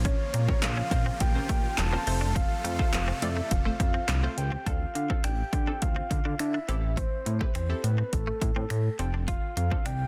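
Upbeat, euphoric dance-pop at 104 BPM in F major, where a dry, overdriven analog drum machine hits up front alongside a glossy chorused synth bass that pumps beneath a round, octave-layered synth lead with dub echo. Huge detuned supersaw chords sustain until 4.6 seconds, warbling phased chord stabs and a twangy clean electric guitar riff sit in the background, and a barely audible group handclap joins from 0.6 to 4.2 seconds over chords moving from Bbmadd9 through Dm7 and Am7 to F6 in a dense, heavily limited mix with little reverb.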